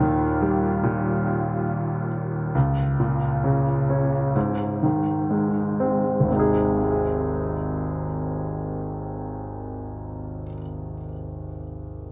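Pop excerpt, tender and emotional, in a slow 4/4 that eases down over its opening 6.3 seconds, carried by a single intimate, up-front concert grand piano playing accompaniment from 0.0 to 12.1 seconds, its deep bass, long sustain and audible action noise wrapped in tape echo and a plate reverb that gives the whole passage an echo-heavy glow as the chords move from Eb through Bbm/Db to Ab.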